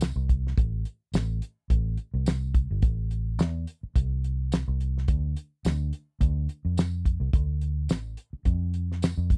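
A damped 1970s-style acoustic drum kit sits up front, its fat snare and tight kick joined by hi-hat and tambourine, driving a mournful, soulful soul-blues groove in A minor at 107 BPM. The straight-eighth feel carries a light swing on the sixteenths. A vintage fingered electric bass, foam-muted, dark and round yet punchy, plays low and up front alongside the drums throughout this 9.4-second fragment of a longer piece, all captured in a dry, close studio sound.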